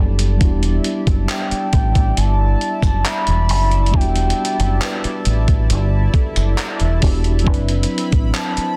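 A gritty, thumpy sampler-style drum kit of kick, hi-hat and handclaps sets a straight 68 BPM 4/4 groove in E minor for this late-night, sensual contemporary R&B excerpt, with a round, dark fingered electric bass up front, a mellow tine electric piano, and a shimmering, detuned pulse-width pad pumping under sidechain as they hold Em9 before moving to D13/F# at 7.5 seconds. A smooth, gliding portamento lead with vibrato, chorus and tape echo enters at 1.3 seconds, and a delicate, bell-like celesta with tape echo rings in the background from 3.1 seconds, in a dry, dense, heavily limited master.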